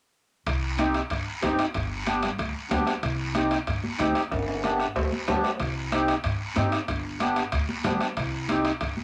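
A driving, danceable cumbia groove in straight 4/4 gets underway at 0.5 seconds, with the soft-beater bombo, the raspy, vintage-toned guiro and ringing metal-shell timbales all entering together, the timbales set back in a distant, large-room space. Bright, high-tuned congas struck with hard hands join just after, close and dry yet tucked into the background. An acoustic upright bass played pizzicato gives a woody, dark low end on steel strings, while the reedy, sweet accordion sits up front with a smooth, light tremolo tuning as it carries the accompaniment. The harmony swings between C minor and G major throughout, and a drum fill from 4.3 to 5.6 seconds breaks up the pattern midway. A moderate small-room reverb gives the whole band a snug, lively feel in this short cut from a longer piece.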